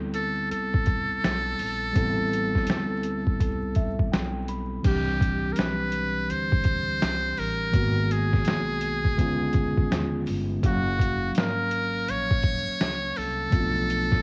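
A mellow tine electric piano and a woody, growly pizzicato upright bass open this nocturnal, cool jazz-hop excerpt at 83 BPM with a swung 16th feel, joined almost at once by a buzzy, breathy metal-muted trumpet carrying the up-front jazz-style solo melody with scooped notes and light vibrato, and by a gritty, pitched-down trip hop sampler-style kit with a thumpy kick, the piano, trumpet and drums each colored by cassette tape, while light reverb and vinyl crackle frame the home-cassette sound and the piano slips in a fill at 3.4 seconds before the harmony moves from Am9 to Cmaj9 at 4.8 seconds.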